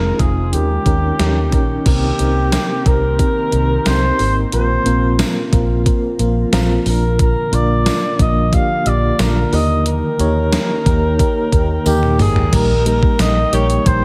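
A straight 4/4 pulse at 90 BPM drives this dramatic, nostalgic 1980s-style pop excerpt. Up front, a gated digital drum machine carries a thumpy kick and an overdriven gated-reverb snare beside a dark, round, foam-muted fingered electric bass, while a distant, roomy flugelhorn with vibrato sings the melody over a mellow tremolo FM electric piano and a glassy, warbling FM pad with ensemble chorus in the background; a jingly tambourine enters at 2.5 seconds, a drum fill arrives at 11.9 seconds, and a tight, warm horn section lands brief stabs at 13.5 seconds.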